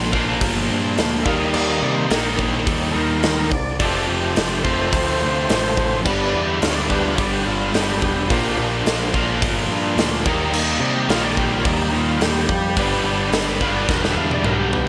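Swaggering and sunny, this classic rock excerpt struts along at 107 BPM in a straight 4/4, with a bright, distorted, double-tracked electric guitar riff set over a darker, biting overdriven guitar riff sitting in the background and a growling, overdriven picked bass. A punchy, up-front acoustic drum kit rings in a bright stone room with crash, hi-hat, kick, snare and toms, while a full tonewheel organ with key click and fast rotary speaker slips in at 1.2 seconds to hold sustained chords in the background. The changes move through Bb, Eb, F and G under light reverb, and a drum fill closes things out at 13.9 seconds.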